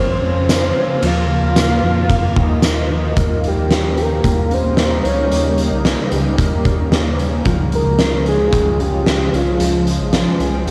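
Hazy cassette home-recording sound with moderate room reverb frames this blissful, dreamy dream pop excerpt at 112 BPM in 4/4, where a soft octave-layered synth lead with chorus, vibrato and tape echo carries the melody until 10.1 s over a cloudy, evolving granular pad, a dark, clean electric guitar playing fingered, chorused arpeggios in the background, and a round, nasal analog bass, while an oversized low-tuned drum kit with a punchy kick, fat snare, dark cymbals and tambourine sits up front in a pumping stone room from 0.5 s, as the harmony moves from Bbmadd9 and Ebsus2 to Eb7 at 3.2 s and Db at 7.5 s.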